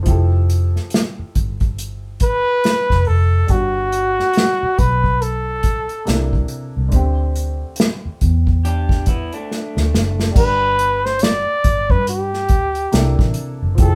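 A smooth, relaxed neo-soul R&B groove with a light sixteenth-note swing opens on an intimate baby grand piano, its action noise audible, and a round, foam-muted fingered electric bass, joined at once by an airy, up-front acoustic kit played with bundle sticks, its punchy kick and medium-tuned snare set in a small room. At 2.2 seconds a breathy flugelhorn takes the solo melody with a soft attack, scooped notes and light vibrato, while a slightly broken-up, lo-fi electric guitar adds a brief second line from 8.6 to 10.3 seconds, overlapping a drum fill that starts at 9.5 seconds. The band plays live in one room with moderate studio reverb, and this excerpt from a longer piece moves through jazzy ninth, thirteenth and suspended chords.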